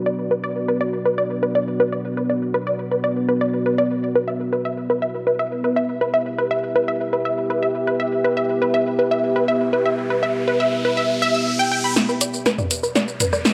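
A gritty hardware recording bathed in a lush hall reverb frames this dark, hypnotic melodic techno fragment, cut from a longer piece. A deep, moody ambient pad with chorus holds sustained chords on B minor and E minor, while a detuned, wave-folded unison pluck spins arpeggios through tape echo, both shaped by filter sweeps as an electronic riser enters at 9.5 seconds. At 12.0 seconds the harmony returns to B minor for a build-up, and a punchy analog drum machine, re-recorded in a small room, enters with a fill of snare, toms, rim click, hi-hat and shaker.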